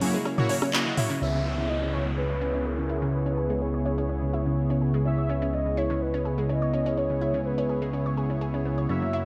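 A velvety synth lead with vibrato carries the melody from 1.2 s in this emotional, expansive progressive house excerpt at 125 BPM in C# dorian, set over a fat, detuned analog bass, mellow supersaw stabs through a low-pass filter and tape echo, bright chorused pluck arpeggios under a filter sweep, and a very quiet, warbling vintage pad holding sustained chords, while a pop drum kit with crisp hats, handclaps and rim click, joined by tape-toned electronic congas and toms, plays only until 1.1 s, an electronic downlifter passes through, and a lush hall reverb surrounds the whole.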